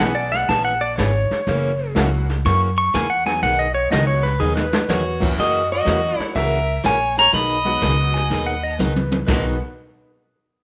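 Swinging and playful, this western swing cut opens with the pedal steel guitar taking a solo over picked acoustic guitar, a jangly tack piano, thumpy upright bass and a distant brush kit with dark cymbals, while a brief drum fill leads into the next passage at 4.4 seconds. At 4.9 seconds a clean lap steel guitar takes the melody, its slide playing marked by volume swells, joined by a boxy, intensely bowed fiddle with light vibrato as the pedal steel carries on. The mix sits in a moderate plate reverb, and the bright, full-bodied acoustic guitar and woody bass give the groove its snap.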